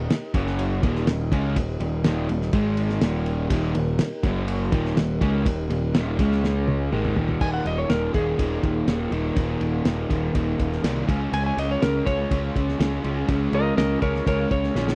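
Classic rock at 123 BPM in a straight 4/4, confident and sunny, cut from a longer piece and captured as a dry, close 1970s-style studio recording with little reverb. Two overdriven electric guitars share the riff from the start, one crunchy and the other raw with a phaser, both picked and sitting in the background. Up front, a fuzzy picked electric bass drives the low end while a cloth-damped drum kit thuds along with a fat snare, tight kick, dark cymbals and a muffled, rolled-off top, adding a drum fill from 6.4 to 7.4 seconds. Behind them a tonewheel organ holds sustained chords through a slow rotary speaker, its tone clear with key click and light overdrive. At 7.4 seconds a clean lap steel guitar enters up front with a fingered slide solo as the harmony moves to Ebsus4 and later Db.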